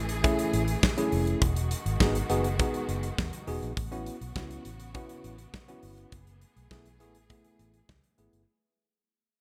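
A lush, distant string section and a dark, round, foam-muted fingered bass open this danceable early-eighties boogie funk groove in F# dorian at 102 BPM, with a tight, up-front drum kit and a worn, slightly out-of-tune tine electric piano, lightly overdriven through a combo amp, joining within the first fraction of a second. The bowed strings hold expressive sustained chords with vibrato and portamento beneath the piano's accompaniment, moving through F#m9, Emaj9, A69 and F#m11 over a straight 4/4 feel. Cut from a longer piece, this short passage fades out across its full 8.5 seconds, with moderate plate reverb and bright, 1980s-style digital production.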